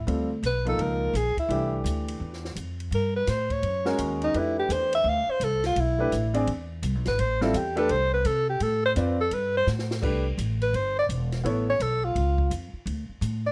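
A clear, close-miked alto saxophone opens with a moody, swinging jazz solo with vibrato and plate reverb, over a woody, pizzicato upright bass and the open, long-sustaining chords of a baby grand piano, in a small-group swing and bop setting at 169 BPM in A minor. A compact cocktail kit sits dry and low in the mix, with dark cymbals, a high-tuned snare and a punchy kick, and it plays a drum fill at 9.7 seconds. At 10.0 seconds the harmony moves to C major, and the piano drops out at 11.7 seconds while saxophone, bass and drums carry on in this fragment cut from a longer piece.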